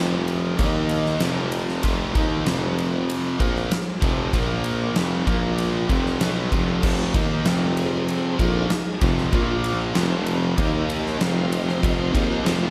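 This confident, sunny classic rock excerpt in F major opens with three overdriven guitars playing a riff together: one biting and warm, one bright and compressed with slapback echo, and a thick, double-tracked fuzz guitar sitting very quiet. The first two sit in the background. A clear tuba with light vibrato carries the bass line in a present, pop style. A huge arena drum kit joins at 0.3 s, up front, with punchy kick, fat snare, and glittering crash and ride cymbals. Beneath it all, a very quiet tonewheel organ holds sustained chords with a piping, scooped, lightly overdriven tone through a fast rotary speaker and chorus vibrato. The straight 4/4 groove at 96 BPM moves mostly between F and Bb chords, with a scoring-stage reverb giving the mix a big arena sound.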